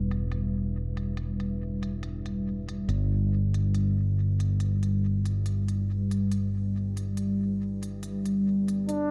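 A huge, reverb-soaked space with a dreamy wash frames this meditative ambient dub fragment at 70 BPM, cut from a longer piece. A deep, moody pad of detuned sawtooth and sine layers with chorus holds sustained chords moving from Em7 to G6, over an up-front fingered electric bass low in its range and a faint, crisp electronic hi-hat, darkened by low-pass filtering, dub echo and a filter sweep. At 8.9 seconds a punchy solo trombone with light vibrato enters on a single note just as the fragment ends.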